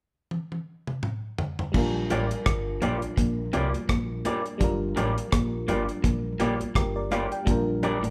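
A swung 84 BPM groove in 4/4 opens with a drum fill on a dry, tight-kicked reggae kit at 0.3 seconds, then this smooth, romantic lovers rock cut in Bb major blooms at 1.7 seconds into glassy, bell-like FM electric piano with chorus, an up-front lo-fi picked guitar riff through a small old amp, a round, punchy, foam-muted electric bass and very quiet, high-tuned congas, with slightly broken-up guitar stabs joining in the background at 2.1 seconds over Bb6 and Gm7 chords, all captured as a live band in a large studio room.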